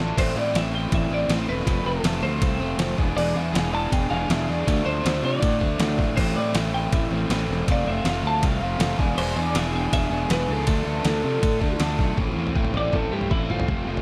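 A gritty, pitched-down boom bap drum fill marks the start of this cool, bittersweet indie rock passage in A minor at 160 BPM, as a biting, double-tracked overdriven guitar riff and a growly fuzz bass drive alongside the up-front kit from the first beat. A bright, twangy twelve-string electric guitar carries the melody through lush chorus and analog delay from 0.2 seconds, and a clean electric guitar solo arrives at 12.2 seconds, all set in a dark production with light reverb.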